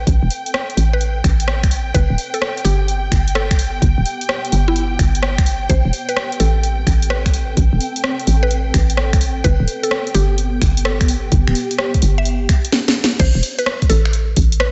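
UK garage in a skippy, late-night two-step groove, cut from a longer piece. A hollow, bouncy FM bass sits up front beside an overdriven, knocking electronic kick, beneath a tape-toned house kit of cracking snare, hi-hat, rim clicks, finger snaps and crash. A woody, round mallet-like synth pluck carries the melody with chorus and analog delay over a dark, bowed violin section and a cloudy, evolving granular pad that fades in, both pumping with the sidechain until 12.7 seconds, when a drum fill leads into the drop at 13.2 seconds.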